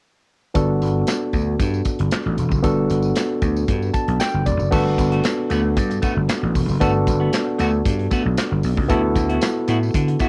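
A lightly reverberant home cassette recording carries this smooth, danceable early-eighties boogie funk excerpt, where a bright, barky tine electric piano with tape coloring accompanies up front from 0.5 s and adds a fill at 3.7 s, a growly, amped slap bass and an acoustic studio drum kit with a pumping room, punchy kick, snare, hi-hat, handclaps and crash drive a straight groove, a jingly tambourine sits in the background, and a dark, fingered semi-hollow electric guitar riff bathed in lush chorus joins at 4.7 s.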